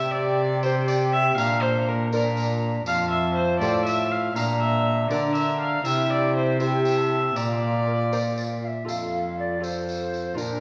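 Heard from further back in a reverberant recital hall, this short cut from a longer piece has a soft, rounded top end and a lingering room tail. It is a festive, courtly renaissance-style consort dance in a straight 6/8 at 80 BPM, counted in dotted quarters. A mellow, airy tenor recorder carries the melody with vibrato and a chiffy, crisp attack, while a gut-strung viola, bowed by one player up front with a smooth, reedy tone, sings a second line beneath it. A clear, distant trombone provides accompaniment alongside a delicate, fingerpicked lute with doubled gut strings set in the background, and a rich, nasal period-style cello played with light vibrato anchors the bass. A jingly, bright tambourine joins at 0.6 seconds, and the harmony moves through C5, Bb, F, Bb, C and Bb before a new section opens on F at 8.9 seconds.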